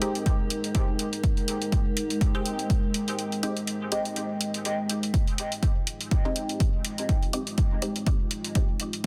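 A swung sixteenth groove at 123 BPM in 4/4 drives this nocturnal, meditative dub techno in F minor, with a punchy, tape-warm analog kick up front from 0.3 s and an electronic hi-hat, and a break arriving at 3.2 s. Muted, nasal sawtooth chord stabs outline a rootless Fm7 through phaser and dub echo, sidechain pumping alongside a moody, full-bodied pad with a sub octave and chorus. An eerie, warbling FM drone hovers in the background until 5.1 s, when a filter sweep runs across the stabs, all set in an echo-chamber reverb under a dense, heavily limited master.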